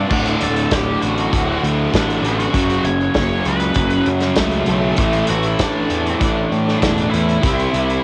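A straight 4/4 pulse from a loose, up-front indie drum kit with a punchy kick, dark cymbals and a rolled-off top drives this bittersweet, cathartic excerpt of quiet-loud alternative rock, moving through D, F#m, A5 and C. A growly, overdriven fuzz bass sits forward beside the drums, while a thick fuzz guitar, a double-tracked overdriven electric guitar and a very quiet high-gain guitar play riffs in the background beneath a dusky octave-fuzz lead guitar carrying the melody. The home cassette recording gives the small-room sound a light reverb.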